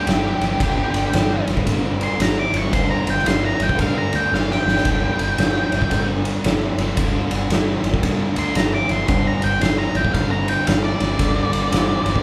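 A heavy, smoky blues rock and southern rock power-trio sound fills a large studio room with moderate reverb, the band playing live together in one space. At 113 BPM in 4/4 with a swung eighth-note feel in G minor, this short cut opens straight into a lead guitar solo that runs its full 12.2 seconds, the octave-fuzz lead sounding dark and distorted as it moves between G4 and D6 over a G5 chord. Beneath it, a double-tracked fuzz guitar plays a bright, picked riff low in the register, sitting in the background of the mix. The fingered electric bass is growly and punchy, its overdriven fuzz tone giving the low end weight. Up front, the oversized low-tuned drum kit brings a fat snare, a punchy kick and ride cymbal, with a saturated, gritty character and a bright stone-room quality, and it drives a drum fill between 4.3 and 4.9 seconds.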